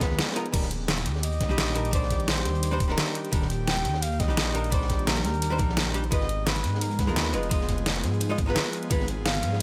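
Lush and uplifting, this liquid drum and bass excerpt sets a mellow, veiled cup-muted trumpet melody with delay over clean, hollow-body archtop guitar accompaniment, also delayed, and an airy, breathy pad whose sustained chords carry chorus and sidechain pumping in the background. A deep, rumbling detuned saw bass sits up front, and the drums layer a gritty, thumpy electronic kick, an overdriven pop kit with a deep snare and crash and ride cymbals, and a dark, saturated breakbeat kit with a high-tuned snare further back. The sound is dry and close, with the harmony moving between Abm6 and Ebmaj7.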